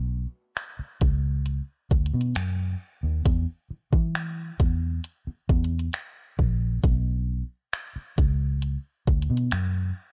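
Late-night and longing, this contemporary R&B excerpt moves at a slow 67 BPM in a straight 4/4, with a dark, warm production and little reverb. A vintage muted fingered electric bass, round and foam-muted with an amped edge, sits up front from the start, ranging from A#1 to E3. At 0.6 seconds a smooth electronic drum kit joins with finger snaps, warm hi-hat and a gentle kick, its tape-warm sound also placed close and forward.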